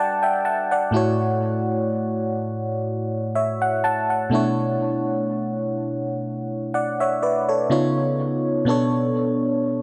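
A dry, gritty hardware recording with light reverb carries this sensual, moody R&B fragment in B minor at 62 BPM with a gentle 16th-note swing, where a solo FM electric piano sits up front with a glassy, bell-like attack, a noise layer, decaying tones, chorus and analog delay, opening with a short fill in the first 0.9 seconds and moving through Gmaj9, F#m7/A, Bm11 and C#7 before settling on Bm7 at 8.7 seconds.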